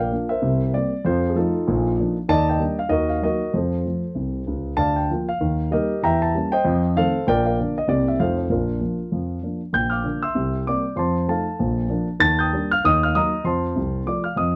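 A dark concert grand plays alone from the start in this exuberant stride piano excerpt, swinging at 193 BPM in Bb major and ranging from deep bass notes up into the high treble. Its mellow, vintage tone with short sustain sits up front, captured by close, detailed microphones with light reverb. The harmony moves briskly through C7, F7 and Bb, touching Ebmaj7, Ebm and an Edim7 before the opening phrase returns at 9.7 seconds and carries on until the cut at 14.6 seconds.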